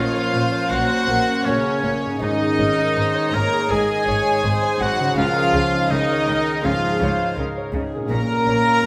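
A drenched scoring-stage reverb surrounds this short cinematic excerpt. At 82 BPM in a loose, rubato 4/4, the mood is sorrowful and longing. A symphonic violin section carries the melody with a soft, floating sul tasto tone, joined by a clear solo oboe, a pure, expressive flute section with vibrato, and a rich studio violin section sitting further back. Beneath them, a dark viola section and a present grand piano provide accompaniment and a mellow French horn section holds sustained chords, while a concert harp rings with thumb-plucked arpeggios in the background. A close, dark double bass section and a cello section form the bass. The harmony moves from Gb/Bb through Absus4 and Dbadd9 before settling on Bbm near 8.1 seconds, just before the excerpt ends at 8.9 seconds.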